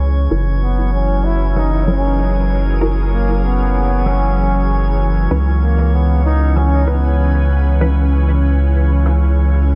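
Ambient dub at 96 BPM in C# dorian, meditative and deep, this short excerpt moves from F#7 to C#m7 over a round, dark analog bass with tube saturation sitting up front and a soft, organ-like pad with ensemble chorus and reverb under a filter sweep. A distant, roomy trombone plays a classical-style solo melody through dub echo from 0.6 to 7.5 seconds, while muted, resonant chord stabs with phaser flicker very quietly in the background. High above, a glassy texture of drifting overtones hovers on C#5 with chorus, and a very quiet, natural rim click in a small room enters at 1.6 seconds.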